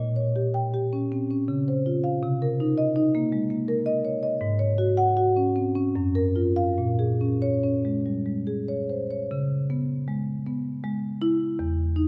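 A solo marimba played with medium mallets sits up front throughout this short contemporary classical excerpt, its tone warm as it ranges from E2 up to G5. The music moves in 3/4 with a rubato feel, the tempo drifting between 70 and 83 BPM, giving the piece a flowing, hypnotic quality. Rooted in Bb minor and tuned to A4 = 439 Hz, the opening section passes through chords such as Bbm6, Dbmaj7, Cm7, Ab7sus4 and Gbmaj7 before settling on Bbm7. At 9.3 seconds a new section begins, shifting to C#m7 and then, at 11.6 seconds, to an Emaj7 chord voiced minus its third. The marimba is heard in a moderate scoring-stage reverb with a 1.5-second decay, and a faint mains hum lies beneath the sound as this fragment of a longer piece closes at 12.1 seconds.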